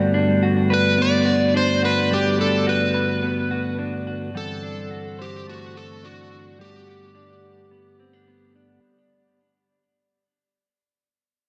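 Blissful and ethereal, this dream pop passage drifts in straight 4/4, cut from a longer piece and fading out from its opening moment until 8.8 seconds. A mellow, flute-like tonewheel organ holds sustained chords through a slow rotary speaker, its key click audible, while a clean electric guitar picks arpeggios coloured by subtle chorus, slapback echo and delay. At 0.7 seconds an overdriven slide guitar enters with a fingered melody, carrying its own slapback echo and delay. The harmony moves from Gmaj7 to D7/G at 4.3 seconds before settling back on Gmaj7. A lush hall reverb bathes the parts in a big arena sound, with all three instruments placed up front.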